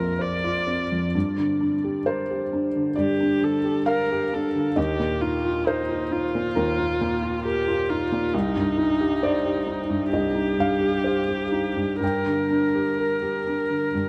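A felt-muted upright piano and a single bowed viola begin together in this reflective, longing neoclassical piece in G minor, moving at a loose, rubato 66 BPM through Bbadd9, Gm, Ebsus2 and Cm before settling back on Gm at 12.0 seconds. The piano sounds mellow and boxy, placed up front with its action noise audible, while the viola plays close and intimate, sul tasto with vibrato, a soft attack and an airy bow. A huge ambient reverb with a 6.3-second tail surrounds the pair, giving the short passage a spacious glow.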